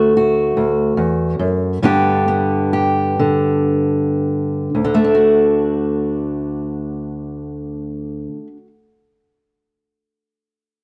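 Gentle and nostalgic, this short folk fragment in 6/8, cut from a longer piece, features a lone fingerpicked steel-string acoustic guitar placed up front, moving from D to G while slowing down over its first 4.8 seconds before settling back on D, with a moderate large-studio reverb and a dark production.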